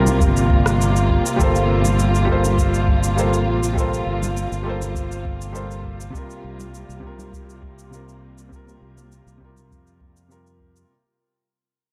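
A punchy, up-front fingered electric bass anchors this smooth sunset chillout excerpt in 4/4, alongside a deep, overdriven electronic kick, a lush, woody bowed string section holding sustained chords with vibrato, an intimate concert grand piano with audible action noise and digital delay, a layered, tape-tinged electronic cabasa and rim click, and very quiet, ringing congas, over C7sus4 and Gm11 chords in a dark, warm production that fades out across its 10.9 seconds.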